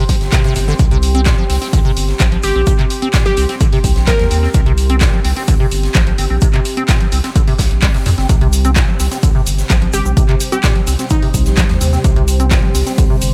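Raw and driving, this acid house cut at 128 BPM rides an up-front, tape-warm electronic kick and a punchy analog drum machine's claps, hats and shaker, with a big rock drum kit adding a fat snare and bright stone-room hats in the background, while a squelchy, resonant liquid acid bass riff with filter sweeps and a thick triangle sub bass pump beneath a moody, mellow sawtooth ambient pad; a crystalline, detuned wavetable pluck flickers in with chorus and delay at 2.4 and 9.9 seconds, and a smooth, wave-folded analog pad with ring modulation joins the chords at 8.3 seconds.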